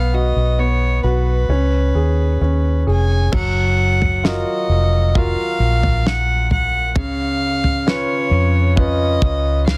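A hopeful, emotional pop ballad in F# major at a slow 66 BPM, this brief excerpt sets a reedy, gut-string solo violin melody over intimate baby grand piano accompaniment, where the action noise is audible, and a dark, foam-muted electric bass that sits round and punchy up front. At 3.3 seconds a dry, damped 70s drum kit enters with tight kick, snare, toms and crash cymbal as the harmony moves through F#maj7 to C#7. The sound is dry with little reverb, in a dense, heavily limited modern master.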